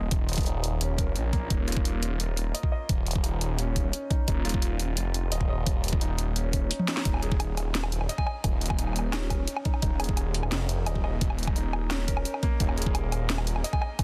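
A dense, heavily limited modern master with a digital ambience carries this spacious, tense half-time drum and bass cut at 173 BPM, where a mellow felt-muted upright piano with audible action noise plays low-pass filtered, delayed arpeggios over a swirling, detuned saw bass with a phaser, while an overdriven, knocking electronic kick sits up front beside a kit of cracking snare, bright hats, toms and woodblock that plays a fill at 6.7 seconds, and a pure FM bell with chorus and phaser sounds briefly in the background at 8.2 and 13.7 seconds.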